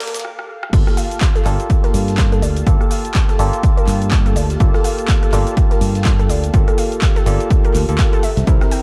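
A dark, warm mix carries this moody deep house excerpt in G minor at 124 BPM, swung on the sixteenths and moving from Gm9 to C7 at 8.2 s. From the start, a bright, barky tine electric piano plays lightly overdriven stabs through phaser and delay, while a mellow, detuned analog pad sustains chords in the background with chorus and phaser, both pumping with sidechain. Beneath them, a gritty, very quiet breakbeat sampler-style kit sits under an overdriven analog drum machine with crash, claps, hi-hats, rim clicks and shaker, and after a drum fill the drop arrives at 0.7 s with an up-front, punchy electronic kick, a round fingered electric bass and a warbling, lo-fi pluck playing arpeggios through chorus and delay.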